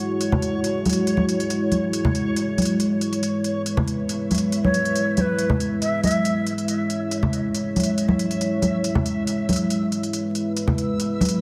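Heavy and cavernous, this short piece of deep dubstep moves at 139 BPM in a half-time feel, resting on a single C# minor chord throughout. A dark analog pad holds sustained chords up front, its detuned sawtooth tone with a sub octave given a slow attack and chorus, while a reversed, granular swelling texture sits quietly above it with a dreamy, bright shimmer and its own built-in reverb. Crisp, tape-warm electronic hi-hats and bright, thin-skinned congas, recorded close, carry the rhythm across the whole passage. Between 4.6 and 6.5 seconds a breathy, reedy ney steps in with a brief tongued phrase full of vibrato, colored by dub echo. The whole recording sits in a wet echo chamber reverb with small room ambience and a layer of vinyl crackle, and it is cut from a longer piece.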